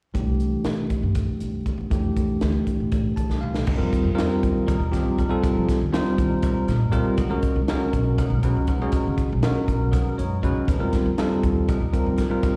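Straight eighths run at 240 BPM in a lopsided 7/8, giving this slick, funky electric jazz fusion in F major (tuned to A4 = 436 Hz) a restless drive. A bright, bell-like tine electric piano sits up front alongside a crisp drum kit with a punchy kick and a high-tuned snare in a pumping small room, while a woody, thumpy pizzicato upright bass on gut strings holds down the dark low end. From 3.7 s, as the harmony shifts to F13sus4 and Db13sus4 chords, a compressed, twangy clean guitar adds quieter picked stabs with subtle chorus and slapback echo, the electric piano slips in a fill near 9.9 s, and the whole passage, cut from a longer piece, comes across as a live gig heard through the venue's PA with recital hall reverb and vinyl crackle.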